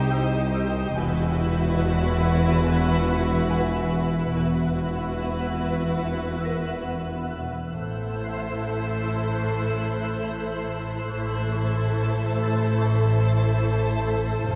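A straight 4/4 pulse at 71 BPM carries this uneasy, eerie suspense-film excerpt, where a dark hard-mallet marimba riff sits under a vibrato-rich violin melody and a closer, lush violin second line, expressive viola section portamento, smooth bowed double basses, a background cello section and a twinkling granular FM shimmer of sustained chords, while a delicate, band-limited vintage music box tinkles until 8.9 s and a soft-attack high violin texture enters at 7.7 s as the harmony moves from Cm through Esus2 to Am, all heard from further back in a wet scoring-stage reverb.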